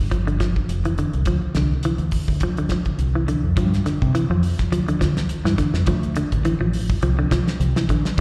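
A deep, round fingered electric bass opens this joyful, driving afrobeat excerpt at 104 BPM, joined almost at once by a clean semi-hollow guitar playing dark arpeggios with slapback echo and a cloth-damped drum kit with a fat snare, tight kick, hi-hat and a rolled-off top. All three parts sit up front over a lightly swung 16th-note feel as the harmony moves between G7(no3) and Dm7, then starts that cycle again at 3.6 seconds. The sound is that of a live gig heard through the venue's PA, with small room ambience and recital hall reverb around it.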